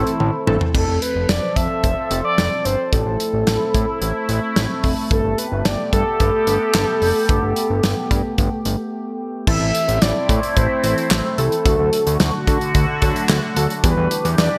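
A round, horn-like synth lead with chorus and vibrato carries the melody over a resonant, phased pad, a thick, saturated analog bass and a brief funky polysynth comp, while an up-front modern studio kit opens with a fill in this melancholic, nocturnal synth-pop excerpt at 110 BPM in A minor; its tight kick, handclaps and toms drive through a break at 8.9 seconds before the punchy comp returns at 9.5 seconds, all set in a lush hall reverb with bright 1980s-style digital production.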